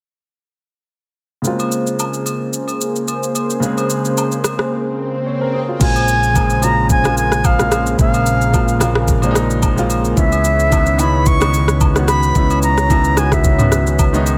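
A bright, reedy silver concert flute with vibrato and digital delay carries the melody from 5.8 seconds in this hypnotic, late-night amapiano excerpt at 110 BPM in B-flat minor. It arrives alongside a round, punchy fingered electric bass just as the knocking, tape-warm R&B drum kit returns after dropping out from 4.7 seconds under an electronic swell. Throughout, a clear grand piano with audible action noise accompanies a detuned sawtooth analog pad with chorus, which sustains Bbm9 and then Dbm9 chords over acoustic agogo bells and woodblock, the whole mix set in light reverb.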